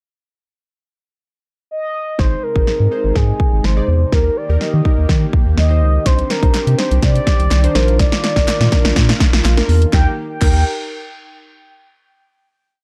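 A deep, round analog bass sits up front in this short, summery dance-pop piece in Eb major at 124 BPM, playing a syncopated line with muted ghost notes and chromatic approach notes, shaped by sidechain pumping. A mellow horn-like synth lead opens alone at 1.7 seconds in the pickup bar, stating call-phrase motifs with vibrato, chorus, phaser and digital delay. The punchy, layered electronic drums enter at 2.2 seconds with bright hats, snare and crash in a syncopated pop beat, and the whole passage is a build-up carrying a drum fill through to 9.9 seconds. Glassy digital keys add syncopated close-voiced chords with a filter sweep, while a smooth, detuned supersaw pad holds chords in the background, both pumping with the sidechain, and crisp, dry hand claps join on the backbeat partway through. The harmony moves through Ab, Eb, Cmadd9 and Bb before settling on a final Eb chord, all set in a dark, warm production with digital ambience.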